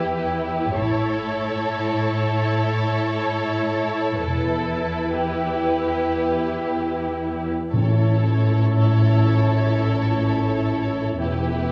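Cinematic, epic orchestral film score in free time, triumphant and majestic, set in A mixolydian and cut from a longer piece. Two violin sections carry a lush, vibrato-rich melody and a second line from the start, joined by a smooth, close viola accompaniment and an up-front, woody, dark cello bass. A symphonic double bass section enters at 0.8 seconds, deepening the low end as the harmony moves between E minor and A. At 7.7 seconds a mellow French horn section adds sustained chords while timpani struck with hard mallets on calf heads sound articulate in the background until 9.0 seconds. The whole is bathed in a scoring-stage reverb and colored by worn, warbling cassette tape with audible pitch drift, lending the grand strings a nostalgic haze.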